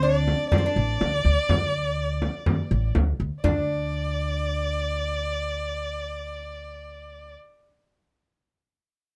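Soulful and hypnotic, this short Arabic maqam ensemble passage moves at 124 BPM in a straight 4/4, tuned slightly high to A4 = 441 Hz. A single bowed violin carries the melody around D5 with rich vibrato and expressive portamento, while a bright, woody fretless oud with doubled strings plucks a second line and a thumpy pizzicato upright bass holds the low end up front. A deep frame drum played with hard hands sounds compressed and saturated from 0.3 to 3.7 s, dropping out shortly after a new section begins at 3.4 s, all captured by close, detailed microphones with light reverb.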